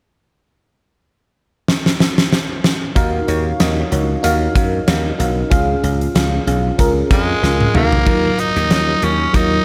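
A huge arena drum kit opens this moody, dramatic 1980s-style pop excerpt at 1.7 seconds with a fill, its fat snare, punchy kick and bright cymbals soaked in gated reverb at a lightly swung 94 BPM in Eb minor. At 3.0 seconds a lush, dreamy FM electric piano with a soft pad layer and chorus joins alongside a bright, growly slap bass, moving through Ebmadd9 and Db. At 7.1 seconds a raspy, gritty tenor saxophone with light vibrato and delay takes up the melody, up front through a final drum fill to the close.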